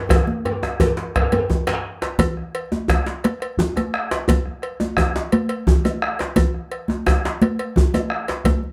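West African traditional drum ensemble music in an earthy, powerful 12/8 at 115 BPM, where a deep, dark bombo sounding from a large room plays alongside ringing, high-tuned congas, a close metallic cowbell and a tight, cracking djembe with metal rattles and a vintage, band-limited tone, while a second djembe plays through a drum fill that opens the excerpt and falls silent at 1.8 seconds, all under light reverb.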